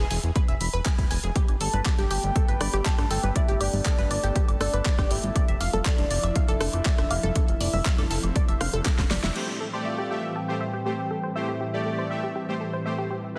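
A dense, heavily limited mix in light digital ambience carries this dreamy, emotional progressive house excerpt at 120 BPM in A minor, where a lush, detuned unison pluck plays sidechain-pumped arpeggios with dub echo over a thick, evolving sawtooth bass, an overdriven, punchy kick up front, a deep house kit with a fat, softly clipped snare, and dry woodblock and congas in the background. From 1.4 seconds an airy, breathy pad with chorus and 12-bit sampler grit holds sustained chords, joined by a round, dark octave-layered lead with tremolo, vibrato and echo. After a drum fill and band accent, the rhythm section gives way at 9.4 seconds to smooth supersaw stabs on Am7 while a filter sweep moves through the pad.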